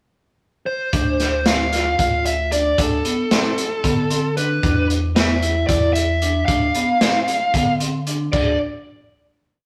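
Driving and intricate, this short progressive instrumental piece moves in a brisk 7/8 at 227 BPM counted in eighths, set in D dorian with a straight feel. A smooth, overdriven electric lead guitar opens with a pickup at 0.7 seconds, then carries a dark, picked, motif-based melody built from sentence-like phrases, sitting up front in the mix. From 0.9 seconds a hard-mallet vibraphone with its motor off rings out a bright, metallic arpeggiated ostinato, close-miked and dry, while a rubbery square-wave bass adds a hollow, nasal, bouncy low line with a filter pluck, locked to the kick drum. The crunchy breakbeat kit drives the uneven groove with a tight kick, medium-tuned snare, hi-hat, crash and dark cymbals, its sound saturated, gritty and rolled off at the top. The harmony moves from Dm7 to E5 and back to Dm7 before a final note at 8.3 seconds, all heard through a rough rehearsal-room recording with a stone room reverb.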